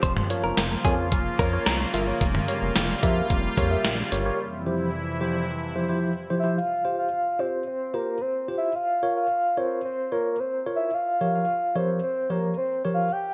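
Bright 1980s-style digital production with a plate reverb frames this cool, melancholic synth-pop excerpt at 110 BPM, where a scooped, direct-recorded clean electric guitar with chorus and delay briefly plays alongside a mellow tine electric piano, a sweeping resonant pad, a glossy chorused synth bass and a gated drum machine with a thumpy kick and gated-reverb snare, before the drums drop out at 4.2 seconds and a round, dark, octave-layered synth lead with tremolo, vibrato and delay carries the melody from 6.4 seconds over the electric piano.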